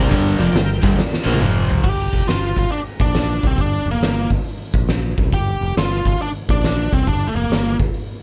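A swung 4/4 groove at 138 BPM drives this gritty, smoky blues rock and southern rock power-trio passage, cut from a longer piece. It opens on G minor with a crunchy, double-tracked overdriven guitar riff up front and a thick, overdriven tonewheel organ holding sustained chords in the background, its key click, percussive second-harmonic attack, chorus vibrato and slow rotary speaker adding a churning haze. Underneath, a growly fingered electric bass sits low, and an oversized low-tuned acoustic kit pounds out a boomy kick, fat snare, dark cymbals, hi-hat and toms in a pumping big room, saturated and close. A drum fill starting at 1.0 seconds leads into the second section, where the riff guitar and organ drop out and a biting lead guitar takes the melody from 1.8 seconds with overdrive and slapback echo. The harmony then moves through F sus2, B flat and G minor with a brief chordless break, and the sound stays dry and gritty.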